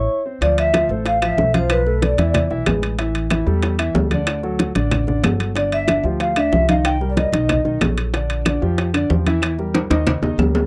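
A dry, close 1970s-style studio sound frames this short, sultry and driving Afro-Cuban jazz cut in D minor at 186 BPM, with a dark grand piano and thumpy, woody pizzicato upright bass up front throughout. A metallic, ringing vibraphone carries the melody in two brief phrases, from 0.0 and again from 5.6 seconds, shadowed in the background by an airy, hollow flute with a chiffy attack. Congas struck with hard hands, round low-tuned bongos, ringing metal-shell timbales and woody claves fill in the percussion after a short break, and a drum fill closes the clip from 9.7 seconds.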